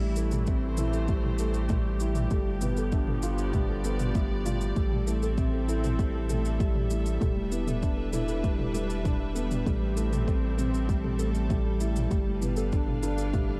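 This cinematic, moving piece of piano and strings electronica in A minor opens at once with a felt-muted upright piano riff, sustained chords from a clear symphonic string section, gentle arpeggios from a soft round pluck, and a deep analog bass. Electronic shaker and toms slip in at 0.2 seconds and an overdriven electronic kick follows at 0.5 seconds, setting a straight 4/4 pulse at 98 BPM. The piano sounds intimate and boxy with a short sustain, carried by delay and shimmer reverb, while the bowed strings bring light vibrato and a smooth, intense top. The bass sits up front with a round, sustained tone and sidechain pumping, and the pluck stays in the background, its chorus-thickened, full-bodied arpeggios also pumping and echoing through delay. The harmony moves through Am7, G7 and Em7 in a dark, warm production with light reverb, and this short passage is cut from a longer piece.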